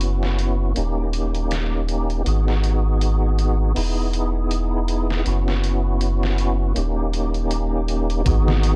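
Trip hop excerpt at 80 BPM with a swung sixteenth feel, smoky and hypnotic, where a fat, lightly overdriven tonewheel organ with key click, chorus vibrato, slow rotary speaker, tremolo, tape echo and 12-bit sampler grit moves through F#7sus4, D#7, G#m7 and Emaj7 over a deep, round dub sub bass and a compressed, pitched-down sampler drum kit with a thumpy kick, medium-tuned snare and filtered hats, all in a dark, dry production.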